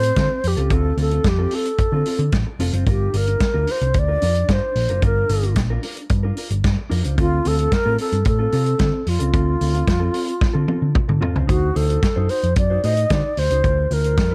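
A straight 4/4 disco groove, glamorous and driving, rides on a punchy, mid-forward soul drum kit and a round, hollow-body picked bass up front, while a clean, compressed electric guitar accompanies beneath an airy, close-miked alto flute melody carried with vibrato over Dm7 and Gm7 chords, until a drum fill at 10.4 seconds leads into a brief D7b9 passage at 11.5 seconds in this small-room, dark-toned excerpt cut from a longer piece.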